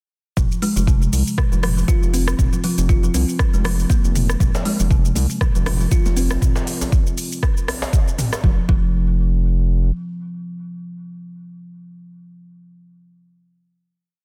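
A woody, thumbnail-plucked kalimba step sequence opens this spiritual, hypnotic afro house piece at 119 BPM in F minor. It arrives at 0.4 s alongside a round analog bass, a deep four-on-the-floor electronic kick up front, and a deep house kit of smooth hats, shaker, rim and low toms, with the kalimba and bass pumping to the sidechain and the kalimba trailing dub echo. Very quiet, close congas slip in at 4.4 s, followed by a distant djembe with metal rattles, before the kit stops at 8.4 s and the swung groove gives way to a final note under studio reverb and a dense, heavily limited master.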